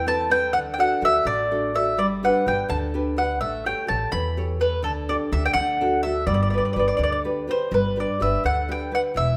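A moderate recital-hall reverb gives this short Italian folk serenade a gently rounded sense of space, with the mandolin and nylon-string guitar sitting up front. The mood is sunny and romantic, moving at 84 beats per minute in a straight 6/8 in G major. The mellow, woody mandolin carries the melody on picked double strings, while the classical nylon-string guitar supplies a warm fingerpicked accompaniment beneath it. A bright pizzicato upright bass, strung with steel, anchors the low end throughout the 9.4 seconds. The harmony moves from D through G and A7 to a Dsus4 that resolves back to D and G, and the opening phrase begins again at 7.7 seconds before the clip is cut off mid-piece.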